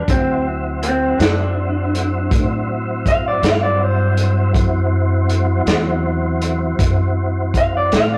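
A rollicking, soulful slow blues in 12/8 opens on a D9 chord, with an electric guitar through a small old amp carrying the melody in a slightly broken-up, compressed, lo-fi tone with tape echo, while a tonewheel organ holds smooth, clean sustained chords through a slow rotary speaker and chorus vibrato. A woody, growly pizzicato upright bass sits up front from the start, and a muffled vintage drum kit with a punchy kick, medium-tuned snare and hi-hat joins at 0.1 seconds, also up front. The rough rehearsal-room recording adds warm saturation and moderate reverb to this brief fragment of a longer piece.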